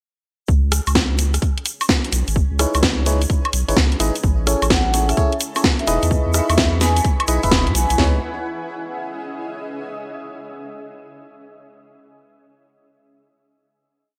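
Bright, 1980s-style digital production with light reverb frames this soulful, late-night two-step garage piece in C# minor at 128 BPM, swung on the sixteenths. Two layered electronic drum kits sit up front: one drives a four-on-the-floor pattern with a tight kick, floor tom, cracking snare and open hats, while the other adds skipping swung closed hats, rim clicks, a high woodblock and snare through gated reverb. A deep, thick, saturated sub bass plays a syncopated riff with sidechain pumping, and a grainy egg shaker plays hand-played sixteenths alongside a cloudy, evolving granular pad that fades in with chorus, pumping and its own reverb. A glassy, bell-like FM electric piano enters at 2.6 seconds with a warbling, close-voiced rhythmic chord riff through chorus and delay, and a dark, metallic vibraphone follows at 4.7 seconds with short answering phrases echoed by delay. The harmony moves from C#m9 through Amaj7 and Emaj7 before the groove gives way at 8.0 seconds to a final C#madd9 chord carried by the pad.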